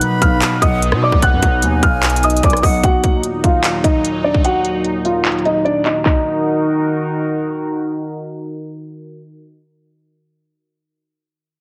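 A breathy flute with tape echo, a mellow, clean electric piano and a sweeping, detuned pad open this brooding, melancholic trap excerpt alongside an up-front electronic kit of hard-clipped kick, crisp hats, handclaps and rim clicks in a half-time feel. A dark, intimate grand piano carries the melody from 0.2 s, with audible action noise and tape echo, over a distorted, saturated 808 bass, and the flute, electric piano and bass drop out by 2.9 s as the chords move from B to Eb minor. The drums stop at 6.2 s, leaving the piano and the resonant, chorused pad, which lingers to the end, all within a heavily compressed, radio-like sound and light digital reverb.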